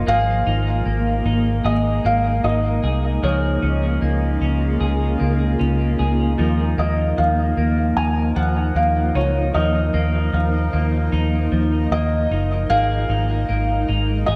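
Soaked in plate reverb, this hazy, haunting dream pop excerpt lays a soft, felt-muted upright piano melody with analog chorus and diffuse delay over a shimmering, ethereal pad of slowly blooming sustained chords, clean hollow-body guitar arpeggios bathed in lush chorus and delay, and a dark, round, foam-muted electric bass that sits punchy and up front.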